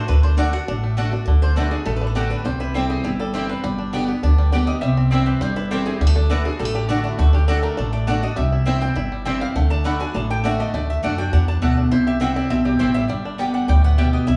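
Driving and lively, this bluegrass cut in D mixolydian runs at 203 BPM, with a twangy banjo melody, a brief warm mandolin line that ends at 1.2 s, bright mandolin stabs, a picked archtop guitar accompaniment, and a thumpy, woody upright bass up front, while a metallic, nasal lap resonator guitar takes a slide solo from 1.3 s, all set in a large reverb heard from further back in the room.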